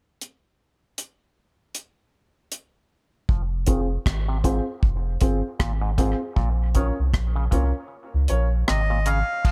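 This short cut from a longer dub reggae piece sits in a small room with reverb and carries a meditative, hypnotic mood over a swung sixteenth-note feel. A deep acoustic reggae drum kit opens alone at 0.2 s, dry and up front, with a tight kick, rim clicks, hi-hat and crash cymbal. At 3.3 s a soft, round sub bass arrives up front alongside an auto-wah clav playing low arpeggios. The clav's stringy, nasal tone is overdriven through a combo amp, filtered and thrown into dub echo, while a filter sweep runs through the rest of the passage. A dark, woody upright piano adds mellow stabs with long sustain and dub echo, its own filter sweeping as the harmony moves from F minor to B-flat minor, and the kick drops out near the close. In the final moment a reedy, breathy melodica steps up front with a brief echoed phrase.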